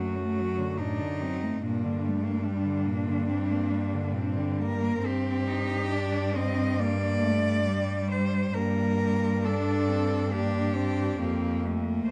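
This is a classical, lyrical piece for a cello ensemble in G minor, cut from a longer work, with a yearning, elegiac mood. It moves at 69 BPM in 4/4, but the beats are uneven and the phrasing breathes with rubato. All four cellos play together from 0.0 to 12.1 seconds: a clear, focused lead carries the melody up front with vibrato, while a second cello sits in the background with a smooth, even line and light vibrato. Below them, a rich, close cello supplies accompaniment with vibrato, and the bass cello, also up front, adds expressive portamento and vibrato in its low register. The harmony begins on D/F#, settles into G minor at 1.6 seconds, and passes through C5/G before returning to G minor. Light reverb and a dark, warm production give the ensemble a somber glow.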